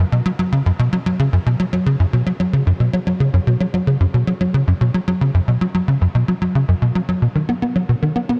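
A light reverb frames this short recording, giving a sense of space around a single up-front synthesizer line. It is an ambient piece at 112 BPM in a straight 4/4, with a mysterious, expansive mood. A tight sequencer bass plays alone from 0.0 to 8.4 seconds, moving between F#2 and B3. Its punchy, driving tone blends sawtooth and square waves, shaped by a filter pluck with a fast attack, a decaying tail and a moving notch. Ensemble chorus and tape echo thicken the bass and extend its notes into the room. The clip is cut from a longer piece, so the line feels like a glimpse of something larger.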